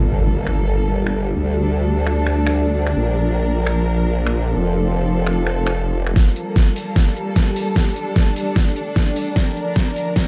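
Menacing and aggressive, this heavy wobble dubstep cut moves at 150 BPM in a half-time feel in G minor, opening on an electronic impact as a detuned, overdriven formant-sweep wobble bass snarls up front until 6.1 seconds beneath sustained chords from a rich, bowed string section that pumps under a low-pass filter. A deep, moody ambient pad with a slow attack and long release drifts in at 1.0 seconds, while an overdriven dubstep kit of finger snaps, bright hats and a deep snare drives the groove. At 6.2 seconds a knocking, overdriven electronic kick joins up front for a build-up and drum fill, all set in a dark production with light reverb.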